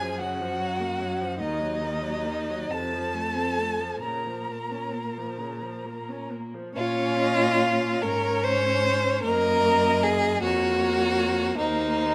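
A string quartet sounds together from the start in a slow, rubato romantic movement in Bb minor and 6/8, around 43-53 BPM by the dotted quarter, its yearning, melancholic mood set by a rich first violin singing the melody high with vibrato and portamento over a close, up-front second violin whose warm, soft-attacked line sits prominently in the middle. Beneath them a distant, rich viola supplies expressive accompaniment, and a focused cello with a smooth top anchors the bass, all bowed by single players in a moderate recital-hall reverb. The harmony drifts from Gbmaj7 through Ebm and F to Bbm, returns to Gbmaj7 at 9.2 seconds, and the passage, cut from a longer piece, breaks off on an open Eb5 at 11.6 seconds.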